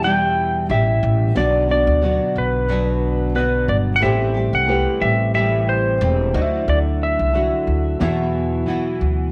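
A gently swung sixteenth-note feel in 4/4 carries this reflective, tender acoustic pop excerpt through Em, Bm, Am7, Dadd9 and Esus2, set in a moderate echo-chamber reverb with studio ambience. Up front, a clean lap steel guitar sings the melody with slide and volume swells until 9.0 s, beside a woody, growly pizzicato upright bass. Underneath, a double-tracked, full-bodied fingerpicked nylon-string guitar with finger squeak and a dark, felt-muted upright piano with audible action noise support the tune, while a flute-like tonewheel organ with key click and slow rotary speaker holds sustained chords in the background.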